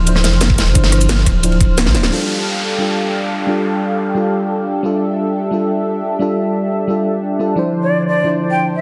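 Warm and uplifting, this short cut from a longer liquid drum and bass piece moves at 176 BPM in a straight 4/4, centered on F major and drifting between Dm9 and F69 chords. A mellow FM electric piano with a soft, warbling vintage tone sits up front throughout, colored by chorus and dub echo, while a smooth, detuned sawtooth pad with chorus sustains chords beneath it. For the first 2.1 seconds, a round sine sub bass with tube saturation anchors the low end. It is joined by layered, tape-tinged electronic drums with a cracking snare and metallic hats, a tight acoustic kit with bright cymbals and a medium-tuned snare, and a knocking electronic kick, capped by a drum fill and a band accent just before the bass and drums stop. An electronic downlifter then falls through the texture as the piano and pad carry on. The two continue by themselves until an airy, expressive jazz flute with vibrato and digital delay enters at 7.8 seconds for a brief high phrase. 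A lush hall reverb and a dense, heavily limited modern master give the sound a polished, enveloping finish.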